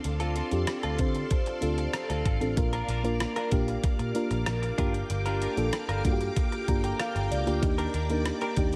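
A mellow FM electric piano sits up front with a soft, rounded tone and a faint noise layer under its chorus, carrying the accompaniment and adding a fill at 6.4 seconds in this glossy, romantic 1980s-style pop passage at 95 BPM, moving through Dm7, Bb, Gm7 and Ebmaj7. A shimmering sawtooth string machine holds sustained violin chords behind it, while a compressed, direct-recorded clean electric guitar picks a riff through lush chorus and tape echo. A dark, foam-muted picked bass and a thumpy, overdriven 12-bit drum machine with hi-hat, kick and rim click drive the groove from the front of a lightly reverberant mix.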